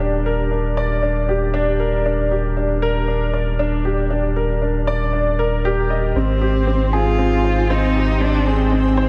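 Soaked in a lush hall reverb, this dreamy piece of piano and strings electronica moves at 117 BPM in Eb major with a hopeful, tender mood. A polished baby grand piano plays the riff up front through analog chorus and a diffuse ambient delay, over a round, deep sub bass, while the harmony shifts from Ebmaj7 to Abmaj7. At 6.2 seconds a bowed cello enters with an expressive melody full of vibrato and portamento, and at 7.1 seconds a cloudy, evolving granular pad settles into the background with slow-attack sustained chords.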